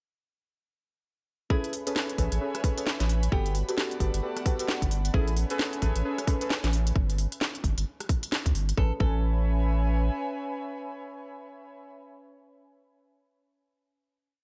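A dry, up-front mix carries this soulful, sunny two-step UK garage piece at 132 BPM in A major, where a tight electronic kick and a garage kit of crisp swung hats, rim clicks and a cracking snare skip over a thick saturated sub bass, while deep mellow chord stabs with chorus and dub echo, an airy breathy pad with 12-bit sampler grit and sidechain pumping, a warbly tape-like pad of slowly shifting chords, and a fingerpicked nylon-string guitar riff in thirds and sixths with dub echo fill out the sound, the kit stopping at 8.8 seconds and the kick at 9.2 seconds as a final Amaj9 chord takes over.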